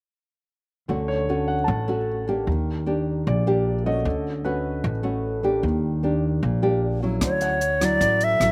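An airy, up-front silver concert flute with vibrato and a soft attack carries the melody of this sunny, romantic bossa nova excerpt in D major, entering at 7.2 s alongside a dry cocktail drum kit of hi-hat, punchy kick and rim click. From 0.9 s, a dark, fingerpicked nylon-string guitar with audible finger squeak and a woody pizzicato upright bass on steel strings play at a brisk 152 BPM over Dmaj7 and Ebmaj7. A brilliant, intimate grand piano with audible action noise adds accompaniment in its upper range, the recording is made outdoors with little reverb, and the harmony settles on Dmaj9 as the flute arrives.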